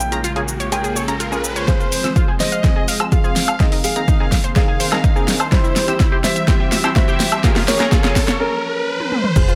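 A light reverb gives this progressive house excerpt a polished space, with a punchy, overdriven electronic kick and a deep house kit with a fat snare sitting up front. At 125 BPM in F minor with a straight 4/4 feel, the mood is expansive and emotional, moving through Bbm7, Fm, Abadd9 and C before returning to Bbm7. A dark, mellow baby grand piano carries the melody with tape echo over an airy, breathy pad that sustains chords with chorus. A detuned supersaw stab and a round, warbling analog pluck playing arpeggios add motion, and the piano, pad, stab and pluck each pump to the sidechain. A funky analog bass appears only briefly at the opening and again at the very end, while a lush violin section and the kick enter at 1.7 seconds, the violins adding a background second line with vintage 12-bit sampler grit. From there a build-up unfolds under a background riser, with filter sweeps on the supersaw and pad, drum fills across crash, toms, hi-hat, shaker, snare and woodblock, and a break at 8.4 seconds.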